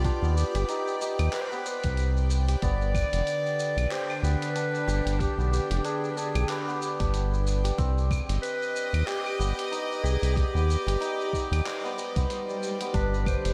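A round, deep analog bass with tube saturation sits up front in this hypnotic organic downtempo excerpt at 93 BPM in C harmonic minor. Over a swung groove from a gritty, sampler-style soul kit of claves, handclaps, hi-hat and shaker and a thumpy electronic kick in the background, a classical-style solo clarinet sings the melody through tape echo, a hammered, shimmering santur spins arpeggios, an earthy chamber string section holds bowed chords with light vibrato and sidechain pumping, and a mellow bronze singing bowl rings softly behind it all, all in a dreamy, reverb-soaked hall, with an electronic swell arriving at 12.0 s.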